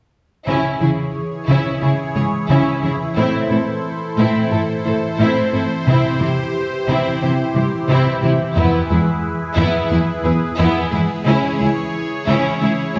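Over a straight 4/4 pulse, this brooding, vast cinematic build-up, cut from a longer piece, lays a smooth, bowed cello section bass beneath a swirling analog pad with phaser and chorus, a round, tine-like thumb-piano-like synth pluck spinning arpeggios through chorus and tape echo, a focused viola section accompaniment, a rich violin section second line and an expressive, soft-attack violin melody tucked in the background, the mix bathed in a wet scoring-stage reverb heard from further back in the room.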